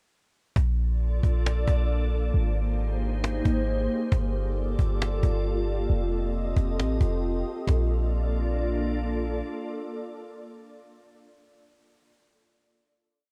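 Dreamy and blissful, this short, complete hip hop piece drifts in an atmospheric cloud-rap style at 135 BPM with a half-time feel in Bb major. A clean 808-style bass enters at 0.6 seconds with deep, boomy sine tones, long sub-bass notes that follow the kick and slide in pitch, sitting dark and up front until 9.4 seconds. A close, dry cajon starts alongside it, laying down a sparse half-time beat with faint snares and fast hi-hat rolls before dropping out at 7.8 seconds. Above them a glassy FM pad holds sustained chords, ethereal and full-bodied with a slow attack and long release, coloured by ensemble chorus, reverb and phaser. The harmony moves through Bbmaj7, Abmaj9, Gm9 and F9 in the verse, then settles back on Bbmaj7 for a final chord carried by the pad alone after the bass fades. The whole recording sits in a small room ambience with a worn, warbling cassette-tape character and its warbly pitch drift.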